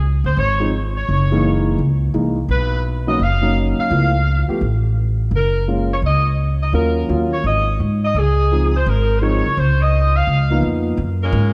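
A woody, thumpy upright bass sits up front from the start, its pizzicato gut strings giving a dark, acoustic pulse to this brassy, swinging big band jazz excerpt in Db major at 170 BPM. A mellow saxophone section enters at 0.3 seconds to carry the melody with vintage vibrato, while a warm concert grand piano with deep bass supplies accompaniment from 0.6 seconds over rich extended chords such as Gb13, Cbmaj9 and Db7alt. Light reverb and a dark production round out the sound.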